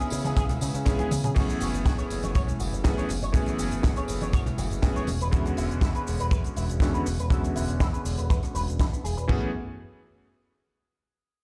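Sensual and cosmic, this nu-disco excerpt cut from a longer piece moves at 121 BPM in a straight 4/4 feel in F# minor, opening on a C#m7 drop with a drum fill before settling into F#m11 at 1.4 seconds and shifting to E13 at 5.1 seconds. Two tight funk drum kits drive it: one sits up front with bright cymbals, a tight kick, hi-hat, rim click, shaker, snare and toms, while the other adds kick, crash, toms and a high-tuned snare, both dry and acoustic in a studio reverb. Tambourine and congas ring close and dry in the background until 5.3 seconds, and a picked electric bass with an envelope filter punches underneath, amped and saturated with sidechain pumping. A clangy, vintage electric grand piano with chorused unisons and long sustain carries the accompaniment, and a twangy, clean guitar riff with an envelope filter rides above it, both passing through filter sweeps from 1.4 to 9.3 seconds. 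A lush string machine with a slow attack and sub-octave sawtooth body glows mellowly in the background only during the opening, and the whole mix sounds as if played on a big system in a bare room.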